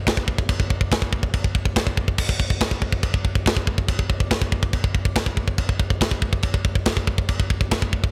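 Epic and heavy, this short metal fragment cut from a longer piece runs at 141 BPM in a straight 4/4, with a tight acoustic drum kit in a big room playing from 0.1 to 8.1 seconds; its tight kick, medium-tuned snare, bright crash and china cymbals sit up front in a mid-forward, dry sound with little reverb.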